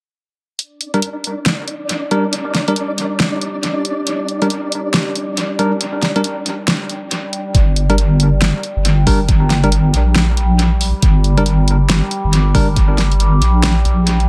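This meditative, dark slice of deep dubstep opens at 0.6 seconds with a deep house drum kit of hi-hat and a fat, overdriven snare, sitting up front and trailed by dub echo in a half-time, swung feel. A bell-like tine electric piano soon adds bright, clean stabs through a low-pass filter and dub echo, while a flickering, grainy texture of detuned granular tones hovers briefly in the background with built-in reverb. From 2.3 seconds, a sustained drone of resonant, moving overtones settles in with chorus, phaser and reverb, its filter sweeping through the opening section. At 7.5 seconds the second section arrives, bringing a deep, soft wobble bass with a chorus-thickened low end and a knocking, overdriven electronic kick. The echo-heavy mix and light reverb keep the mood spacious and brooding as this fragment of a longer piece unfolds.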